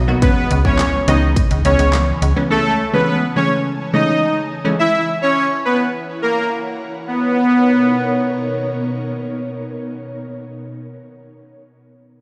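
Dance-pop at 105 BPM in B major, carefree and euphoric, cut from a longer piece: an ethereal, warbling pad with chorus and reverb sustains chords until 10.1 s, while a snappy FM slap bass with a metallic attack and a punchy, fat-snared electronic drum kit with handclaps drive the drop only until about 2.4 s, crisp detuned wavetable stabs pluck through C#m7 and Amaj7/C# to 4.8 s, and a smooth, up-front supersaw lead with slapback echo and delay carries the melody over E6 and F#7 toward Bmaj7, with the pad, bass, stabs and lead all pumping against the sidechain in a live-venue sound with recital-hall reverb.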